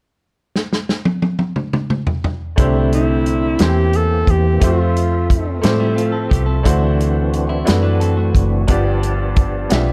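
Slow, soulful gospel in 6/8 at 59 BPM in C major, with an uplifting lift as a roomy soul drum kit opens alone with a fill before the band enters at 2.6 seconds. A round, foam-muted electric bass sits up front beside a bright, worn baby grand piano and a fat tonewheel organ humming in the background through fast rotary speaker and chorus vibrato, with chords moving from C69 through Fmaj7 and D9 to G7. A breathy, whispered tenor saxophone carries the intimate melody with scooped notes, then a clean, compressed electric guitar takes a second line from 5.6 seconds, and the piano adds a closing fill in this dark, lightly reverberant production.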